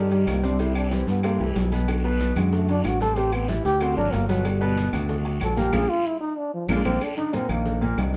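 Afro-Cuban jazz at a lively, danceable 187 BPM, with a breathy, mellow trombone soloing up front with light vibrato and scooped notes over a warm grand piano whose action noise and long sustain are audible, while a bright fingered electric bass sits direct and forward. The percussion bed of ringing congas, tight high-tuned cowbell, metal-shelled agogo bells and timbales, woody claves, raspy guiro and grainy maracas sits low in the mix, with the guiro dropping out at 6.9 seconds. A drum fill and band accent arrive at 5.7 seconds, all captured live in one stone room with moderate reverb in this short excerpt from a longer piece.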